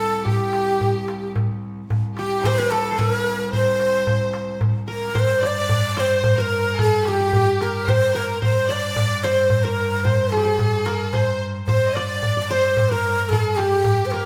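A band plays live in a stone room whose reverb adds a wet tail, in this passionate Arabic maqam piece at 110 BPM in a straight 3/4, which settles into maqam bayati on G from 5.2 seconds. Up front, a breathy, end-blown ney with soft attacks and vibrato carries the melody, while a bright, focused violin section and, in the background, a fingerpicked qanun with a triple-strung, bright-edged sound play a second line. Beneath them a single cello holds an earthy, slightly nasal drone with a biting, airy bow, and a crisp metal-shelled darbuka, close and dry under hard hands, drives the rhythm from 0.3 seconds.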